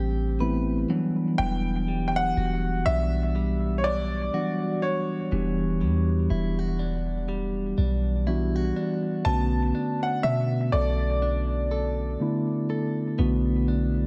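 Contemporary R&B with a longing, late-night mood and a swung 16th-note feel, where a mellow tine electric piano and a deep, boomy 808-style bass sit up front over Am9, Em9 and Bm9 chords, a bright, direct-recorded electric guitar picks compressed arpeggios through dub echo, and from 1.4 seconds a clear, slightly worn grand piano carries the high melody, also trailed by dub echo, in an echo-heavy mix with light reverb.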